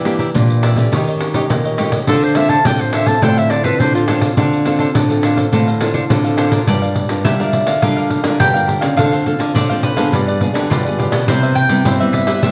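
A clear, punchy clarinet in classical style stands up front for a brief solo phrase from 2.1 to 4.0 seconds, carried by a wet, large studio reverb. This excerpt of samba and choro moves at 104 BPM in a straight 4/4 in D minor, with a nostalgic, yearning mood. Beneath it, a jingly, vintage, band-limited pandeiro sits up front, while a crisp, picked cavaquinho and a small, fingerpicked nylon-string guitar fill out the accompaniment. A second nylon-string guitar, woody and classical with old strings, holds down the bass from the background. At 6.4 seconds a round mandolin with double strings enters with a second line and takes the solo through the second section, as the harmony passes through chords such as Gm7, G7b9 and Cmaj7.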